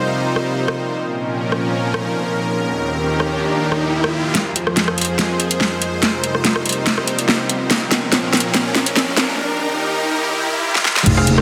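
A half-time pulse drives this heavy, aggressive wobble dubstep excerpt, where a lush, detuned supersaw pad holds sustained chords that pump against the beat, while a deep, moody ambient pad with chorus and reverb sits beneath, and an up-front dubstep drum kit with a huge snare and metallic hats builds through long fills. A riser and sub drop climbs in the background from 2.1 s, pushing the build-up toward an impact at 11.1 s. There, a saturated, resonant wobble bass lands with a knocking electronic kick and a bold, punchy orchestra-hit-like synth stab, all bathed in a wet, lush hall reverb and a dense, heavily limited master.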